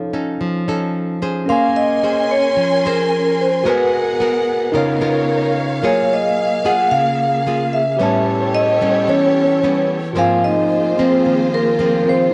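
A straight 4/4 bossa nova pulse at 111 BPM carries this wistful, intimate piece, where a dry, ringing, close-miked vibraphone with fast motor vibrato leads the melody over fingerpicked classical nylon-string guitar and clean tine electric piano. Lush bowed strings with expressive portamento join at 1.5 seconds, and an airy, hollow alto flute adds a second line from 9.1 seconds, the whole scene sitting in light small-room reverb as the harmony drifts through rich extended chords.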